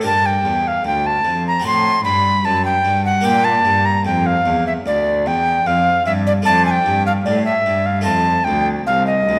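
A close-miked tenor recorder sits up front in a moderate concert hall reverb, its airy, woody straight tone carrying a touch of chiff on each tongued note. This is a short passage cut from a longer baroque-style sonata movement with continuo, solemn and grave at a steady 75 BPM in 4/4, tuned to A4 = 441 Hz. The recorder carries the melody between D5 and C6 throughout the 9.4 seconds, while a dry, brilliant Italian-style harpsichord supplies plucked accompaniment with a full sound from its octave strings. Beneath them, a single bowed cello plays the bass between C2 and Bb2, its gut-string tone nasal and reedy and set more distantly in the room. The harmony moves from Gm through F#dim back to Gm, then to Dm/F and F7 at 8.1 seconds.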